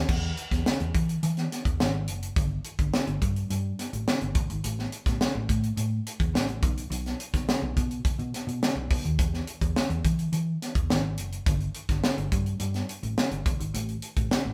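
Drenched in a wet studio reverb that captures a band playing live in one room, this polished 1980s jazz-funk pop fragment moves at a straight 106 BPM in 4/4, tuned to A4 = 438 Hz, with a bittersweet, nocturnal mood as a tight, up-front acoustic funk kit with a high-tuned snare, tight kick, hi-hat and crash cymbal drives the groove while a dark, round, punchy hollow-body short-scale fingered electric bass runs from F#1 to E3 throughout the 14.5 seconds.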